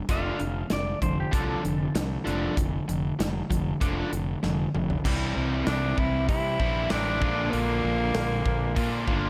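Gritty and brooding, this classic rock passage rides a crunchy, double-tracked overdriven guitar riff over a growly fuzz bass and a big acoustic drum kit with a punchy kick and bright cymbals. A twangy, clean lap steel slide line appears only briefly at the opening. After a drum fill at 4.4 seconds the chords move from Dm/F to C and then Bb, and a raspy tenor saxophone with vibrato takes the melody from 5.7 seconds, all set in a small room.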